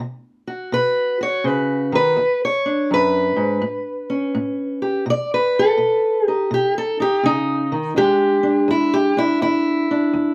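A fingerpicked steel-string acoustic guitar with a dark, boxy parlour tone sits up front in a reverberant studio room, strolling through a swaggering, laid-back swung country blues over B5, E7, A7 and B7 chords before stepping into a solo turn on E7 at 8.0 s in this short cut from a longer piece.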